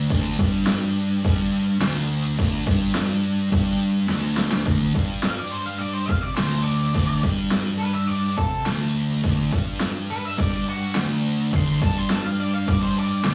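A thick, double-tracked fuzz guitar riff opens this swaggering, rowdy garage rock excerpt at 105 BPM, joined at once by a punchy, layered electronic drum kit with a huge snare and crash cymbal, then by a jingly tambourine tucked in the background, and, after a drum fill, a dark octave-fuzz lead guitar solo entering at 5.3 seconds, all set in a rough rehearsal-room sound with tube saturation and small-room ambience.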